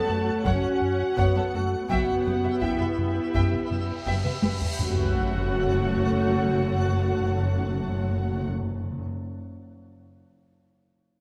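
Mysterious and uneasy, this cinematic suspense cue is cut from a longer piece and moves at a steady, straight pulse. Muted strings form its core: a distant studio violin section carries the veiled melody high in the background, while a close symphonic violin section adds a second line, violas fill in the accompaniment, and very quiet cellos and double basses anchor the low end. A dark French horn section holds punchy, smooth-topped chords alongside a twinkling granular texture that sparkles with octave-up shimmer and its own reverb. Underneath, timpani struck with hard mallets pulse throughout, while a round analog bass riff that stops at 4.7 seconds and heavy-sticked taiko drums deep in the mix drive the opening half. A huge, bright cymbal swell and sub drop begin at 3.8 seconds, building with a drum fill into an impact at 4.8 seconds, where a higher, faint layer of muted violins briefly joins. 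Close, detailed microphones and a moderate scoring-stage reverb give the ensemble a clear yet spacious sound.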